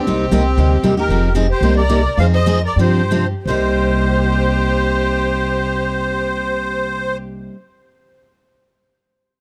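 Acoustic string swing in the jazz manouche style, this fiery, swinging excerpt in C minor runs at 163 to 232 BPM, with a reedy, shimmering musette accordion carrying the melody up front, a bowed violin adding a soft-edged, expressive second line full of vibrato and portamento, a bright, full-bodied picked dreadnought guitar supplying the accompaniment, and a woody, dark pizzicato upright bass underneath, all captured in a dry, close 1970s-style studio sound as the music slows from 1.1 to 3.5 seconds through Fm9, Cm7, Fm7 and G7sus4 before settling back on Cm7 at 3.5 seconds.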